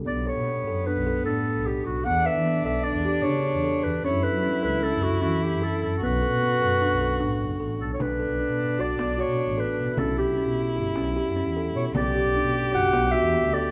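A distant, roomy clarinet carries the melody in this restless, urgent contemporary chamber piece in 5/4, over a soft, airy sul tasto cello line, mellow woody kalimba arpeggios and a dark bowed double bass with vibrato, while a small, bright frame drum joins very quietly at 8.0 seconds under light reverb.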